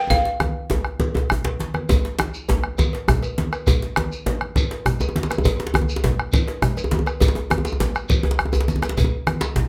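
A woody, buzzing balafon with plate reverb opens this powerful, festive West African drum ensemble in 12/8, playing only until 1.6 seconds, while a deep, dry bombo, bright low-tuned congas, a metallic cowbell and two tight, cracking djembes, one carrying metal rattles, push through a drum fill before a grainy, mellow shekere joins at 1.9 seconds, with another fill arriving at 8.2 seconds.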